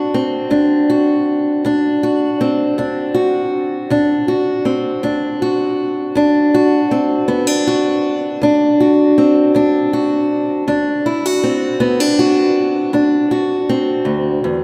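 A fingerpicked steel-string acoustic guitar plays alone throughout this 14.6-second blues excerpt. It has a bright, boxy parlour-guitar tone with fresh strings and audible finger squeaks, sitting up front and ranging from D2 to F#4. The mood is gritty yet laid-back, moving at a slow 53 BPM in 12/8 with a straight feel, tuned slightly high at A4 = 441 Hz. The harmony rests on a D7 chord in D mixolydian from the start. A heavy cathedral reverb with a 5.2-second decay places the guitar in a vast, echoing space.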